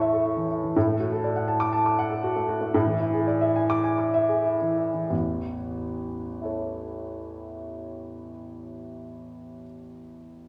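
A solo grand piano, present and up front with long sustain, plays a brilliant, sparkling classical virtuoso study in A major with a rubato feel between 90 and 123 BPM, easing back in the first 5.1 seconds over harmonies moving from A through D/A and E7/A before returning to A at 5.1 seconds, all bathed in a wet concert hall reverb in this brief 10.5-second cut from a longer piece.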